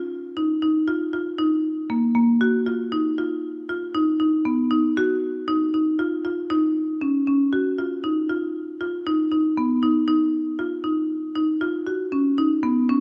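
A moderate recital-hall reverb, lingering about 1.7 seconds, surrounds a solo marimba that sits up front in the sound. This short contemporary instrumental piece, cut from a longer work, moves at 117 BPM in 5/4 with a straight feel, and its mood is hypnotic yet restless. The marimba is played with medium hard mallets on padauk bars, producing a woody, dark and smooth tone with a clearly percussive attack. Its lines stay in a compact register from A#3 to F#4, tuned slightly high to A4 = 441 Hz. The opening passage runs until 10.1 seconds, where a new section begins and carries the fragment to its close at 13.0 seconds.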